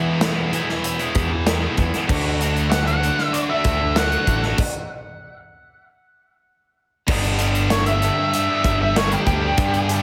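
Anthemic and cathartic, this cut from a longer quiet-loud alternative rock piece moves at 96 BPM in a straight 4/4, shifting from E to D and then to G. An overdriven semi-hollow guitar with a hollow-body glow plays the riff alongside two scooped, high-gain distorted guitars sitting in the background, one of them double-tracked. A punchy, direct electric bass sits up front, and a big acoustic rock kit with a punchy kick, medium-tuned snare, crisp crash and hi-hat rings through a large room. At 2.7 seconds a dark octave-fuzz lead guitar enters with tape echo, and a stop arrives at 4.6 seconds. From 7.1 seconds the piece moves into a new section where the fuzz lead takes a solo over the band, all set in light small-room reverb.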